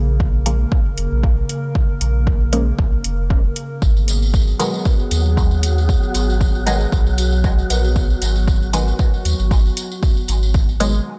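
Nocturnal and hypnotic, this dub techno groove at 116 BPM moves from Bbm to Abm7 over an overdriven, up-front kick, metallic analog hi-hats and a clean sine sub bass, while a filter-swept, detuned dub chord stab with phaser and dub echo pumps against a dark, warbling tape-like pad; a jingly tambourine joins at 3.8 s, an airy, wind-like noise texture arrives at 4.5 s, and a lo-fi dusty pluck follows shortly after in the background, the whole captured in a dry, gritty hardware sound.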